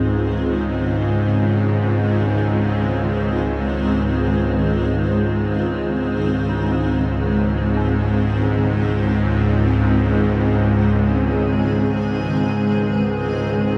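In free time, this cavernous, desolate dark ambient drone, cut from a longer piece, rests on an F minor seventh for 13.8 seconds, with a tense, string-like bowed-like drone of sawtooth unison and vibrato sitting up front in the low register beneath a cloudy, evolving granular cloud pad of blurred sustained chords, while a very quiet, eerie dark detuned synth bell warbles through inharmonic arpeggios with chorus and phaser, all steeped in a huge reverb with an 8.2-second tail.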